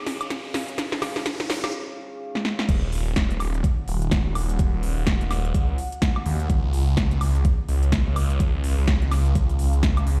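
A thick, swirling detuned saw bass, saturated and phased with sidechain pumping, drops in at 2.7 seconds and drives this gritty, bouncy bass house excerpt in Eb minor at 126 BPM with a swung sixteenth feel, moving from Ebm to Db. Before it, a short build-up brings a riser, drum fills from a big-room kit with a punchy snare, crisp hats, crash and woodblock, and a stop at 1.7 seconds, while an overdriven, knocking electronic kick sits up front from 0.3 seconds. Underneath, a deep, dark, chorused pad with slow attack pumps quietly in the background, and the whole mix carries the stony reverb of a bare room heard through a big sound system.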